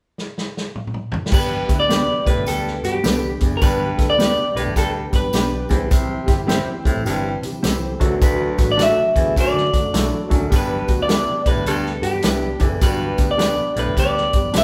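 Joyful and uplifting, this swung 1960s-style soul opens with a drum fill on a punchy vintage kit, and at 1.3 seconds a bright, twangy, slightly broken-up electric guitar takes the melody over a raspy baritone saxophone riff, round muted bass, a background grand piano, a very quiet tonewheel organ with fast rotary speaker and key click, jingly tambourine, soft-handed congas joining at 1.5 seconds, and clean guitar stabs bathed in spring reverb from 1.9 seconds, with the band playing live together in one reverberant studio room.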